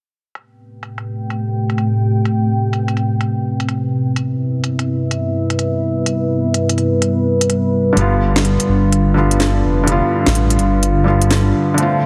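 A dark analog pad carries this nocturnal, ghostly future garage excerpt at 126 BPM in A minor, its deep, moody sawtooth chords softened by chorus and phaser and shaped by a filter sweep across Am9, Cmaj7 and G7. Underneath, a swung organic electronic kit of crisp hi-hats and a woody, overdriven snare sounds re-recorded in a small room. A felt-muted upright piano enters at 7.9 seconds, intimate with audible action noise and tape echo, and a rumbling, beating detuned saw bass joins at 8.0 seconds, all within a moderate scoring-stage reverb and a heavily compressed radio sound.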